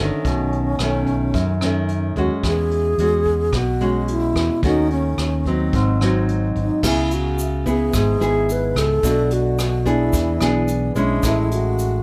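Bossa nova at a relaxed, sunny 109 BPM in E major, where a breathy, mellow alto flute carries the melody with an unsteady, tongued vibrato over an up-front, full-bodied nylon-string guitar, fingerpicked on fresh strings, and a round, punchy fingered electric bass. Behind them, a vintage brush kit sits distant and roomy, with dark cymbals, a rolled-off top and a firm kick. A grainy, bright egg shaker joins in the background at 6.8 s as the harmony moves from C#m7 through Bm7 and E7 to Amaj7, all under light reverb.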